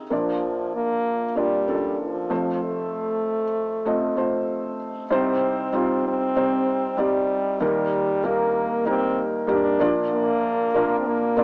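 This short pop fragment has the small-speaker character of a home cassette recording, set in a moderate studio reverb. It moves at 96 BPM in a straight 4/4 in B-flat major, tuned slightly sharp to A4 = 441 Hz, with a hopeful, warm mood. A felt-muted upright piano carries the accompaniment from the first moment, sitting up front with a soft, mellow, intimate tone, audible action noise and a hint of cassette-tape colour, spanning low bass notes up into the treble. A French horn enters at 0.1 s with the melody, also up front, singing in a vintage, classical style with light vibrato and a warm, solo voice within a narrow middle register. The harmony moves from Bb to F in the opening phrase, then shifts at 5.1 s into a second phrase that passes through Cm and Eb before settling back on Bb, and both parts play on together to the end of the cut at 11.4 s.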